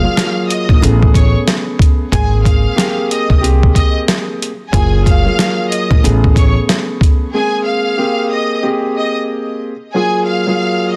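A swung 16th-note groove at 92 BPM in 4/4 drives this soulful, nostalgic boom-bap hip-hop fragment in Ab major, cut from a longer piece. The gritty, pitched-down sampler-style drum kit sits up front from 0.2 to 7.2 seconds, with a thumpy kick, medium-tuned snare and hi-hat that sound compressed and tape-warm. A woody pizzicato upright bass with steel strings moves in its low register beneath the kit, dropping out at 6.5 seconds. Throughout, a dark, mellow grand piano plays intimate, vintage-toned maj9 chords, with audible action noise adding to its closeness. Above it, a clear, focused studio violin section carries the bowed melody with vibrato, touched by digital delay. The small room reverb and dense, heavily limited modern master keep the whole sound tight and full as the harmony drifts between Gb, A and Ab major-ninth chords.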